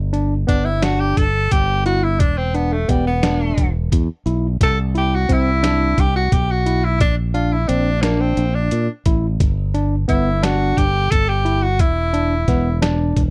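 A punchy, forceful tenor saxophone carries a jazz-style solo through this bright, intricate progressive instrumental excerpt in 7/8 at 175 BPM in G major, sounding roomy and distant yet up front from 0.5 to 12.8 seconds. Beneath it, a barky, gritty overdriven tine electric piano plays arpeggios through a combo amp. A direct, up-front fingered electric bass and a compressed, muffled trip hop sampler-style kit with a thumpy kick and a pitched-down character drive the G5, E5, C and Bb changes, all in a dry, close 1970s-style studio sound.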